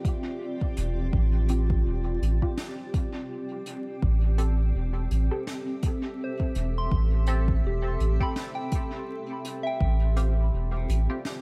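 A small, echo-heavy room dusted with vinyl crackle frames this meditative, spacious ambient dub excerpt at 83 BPM in A minor, where a cloudy, evolving granular pad holds sustained chords and a pure FM bell spins chorused, dub-echoed arpeggios over a soft, tape-warm electronic kick, airy brushed hi-hat and snare, a deep, round sub bass entering at 0.8 seconds, and muted, phased sawtooth chord stabs from 1.5 seconds, all drifting from G7sus4 to Am7 and back.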